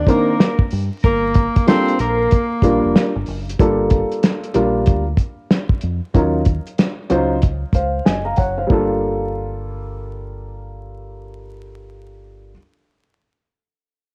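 A swung 94 BPM groove in 4/4 drives this smoky, nocturnal jazz-hop cut in G minor, with a cloth-damped, thuddy drum kit up front carrying hi-hat, tight kick and snare through cassette tape and 12-bit sampler grit until it drops out at 8.9 seconds. A breathy tenor saxophone sings a short jazz melody in subtone, with vibrato and scooped notes, while a dark, slightly broken-up picked electric guitar adds a second line; both fall away at 3.2 seconds. A mellow grand piano with audible action noise and short sustain holds the chords from Cm9 through Gm9 and Ebm9 beside a round, deep dub bass, all in a small home room with light reverb and vinyl crackle.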